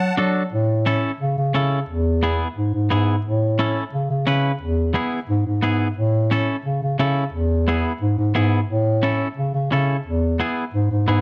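A straight 4/4 Latin groove at 176 BPM in A major sets a sunny, joyful mood in this short excerpt cut from a longer piece. A dark bass clarinet carries the bass line up front from the start, its vibrato, scooped notes and smooth top giving a soloistic jazz flavor. At 0.2 seconds a clean, picked, twangy electric guitar joins with compressed accompaniment, as the chords move between A and E under light reverb.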